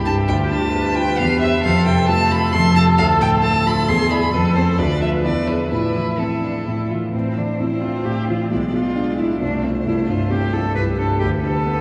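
In a straight, quick 3/4 at 133 BPM, this graceful, cheerful classical-period piano quartet movement in A minor, tuned to A4 = 445 Hz and cut from a longer piece, sets a rich, distant violin melody with light vibrato over a woody cello second line, a smooth viola in the background and an up-front concert grand whose dark, vintage tone carries deep bass and audible action noise, heard through a wet cathedral reverb that suggests a vast, echoing space.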